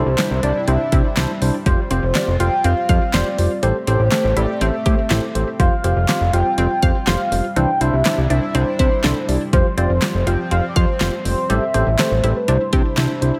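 Wistful and nostalgic, this synth-pop excerpt moves at 122 BPM in a straight 4/4, circling through Cadd9, Fsus2 and Am7 as a velvety, warbling synth lead carries the melody with chorus, tape echo and vibrato over a clean tine electric piano and a shimmering, retro pulse-width pad in the background. A squelchy, resonant blip pluck spins phased arpeggios behind them, while a fat, nasal, saturated analog bass sits up front beside a deep house drum kit of deep kick, handclaps, hi-hat and snare, which enters at 0.2 s with gated reverb. The mix sits in a light reverb, with the bass and drums leading the blend.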